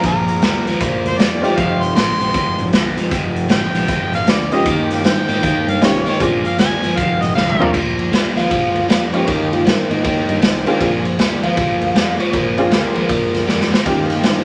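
A swung shuffle in 4/4 drives this laid-back, rollicking electric blues excerpt, where a saturated, up-front garage drum kit with a punchy kick and a crunchy overdriven guitar riff ride over a growly fingered bass in the background, while a jangly, detuned honky-tonk upright piano comps and a clear, overdriven harmonica with light vibrato and scooped notes takes a jazz-style solo until 7.7 seconds, after which a compressed, slightly broken-up guitar through a small old amp carries a second line from 8.4 seconds, all set in moderate studio reverb with vinyl crackle.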